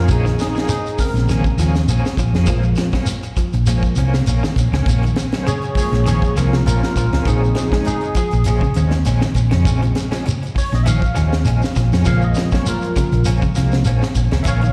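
A tight funk drum kit with a high-tuned snare and tight kick drives a lightly swung 16th-note afrobeat groove alongside a grainy, band-limited shekere and a dark, round hollow-body bass sitting up front, in this defiant, intense fragment cut from a longer piece. An overdriven tine electric piano takes the solo throughout, bright and barky through a combo amp with analog chorus and slapback echo, over chords moving between Bbm7 and a rootless Gbmaj7/Bb. Two twangy, slightly broken-up electric guitars add tremolo-laden stabs and arpeggios with tape echo, the stab part tucked in the background, all heard as a live gig through the venue's PA with recital hall reverb.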